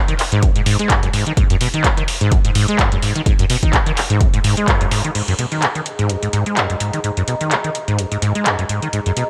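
A driving 4/4 groove at 127 BPM, swung at 55% on the sixteenths, anchors this hypnotic acid house excerpt in G# minor, built over a G#7 chord with its third omitted. A booming analog drum machine runs throughout with dry, up-front handclaps, metallic hi-hats and crash cymbal, while a punchy, tape-warmed electronic kick adds weight until it drops out at 4.8 seconds, just after a band accent at 4.7 seconds. Front and center, a squelchy, resonant sawtooth acid bass riff between F#2 and G#3 carries a filter sweep with fast, decaying notes, colored by overdrive, ensemble chorus, tape echo and sidechain pumping. At 5.6 seconds a warbling, detuned pad of square and triangle waves fades in softly in the G#4 to A#5 range, its lo-fi, nostalgic haze shaped by a moving notch, chorus, reverb and a pumping sidechain, sustaining darkly with a long release. A light reverb ties the sound together in the room.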